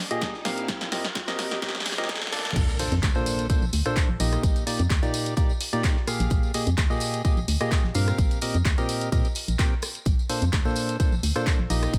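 Over a lightly swung 4/4 groove of up-front layered electronic kick, a punchy analog drum machine with crash, handclaps, hi-hat, rim click and snare, and a very quiet, gritty, pitched-up breakbeat kit, this joyful, uplifting piano house passage opens on a hollow, chorused organ stab riff with delay and sidechain pumping while a background riser and drum fill build toward the drop at 2.6 seconds, where an impact lands and a dark, decaying FM bass with its own pumping arrives alongside a vintage, band-limited tambourine, all in a dry mix.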